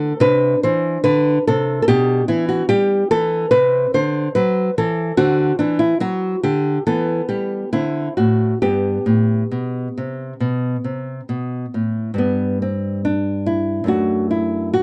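A solo nylon-string guitar opens this short excerpt, fingerpicked and placed up front, with an intimate, small-bodied tone. It plays a classical, baroque-style dance in G major, grave yet flowing, moving at roughly 66-73 BPM in 4/4 with a rubato feel that lets the pulse breathe. The harmony passes from Cmaj13 through G/B, Cmaj9#11 and D7 before touching Em and settling on G at 8.6 seconds, lending the dance colour beyond plain triads. At 12.2 seconds the guitar moves into a new section of unaccompanied line before arriving on D/F# near the close. The sound is dry and close, in the manner of a 1970s studio recording, with only light reverb around the instrument.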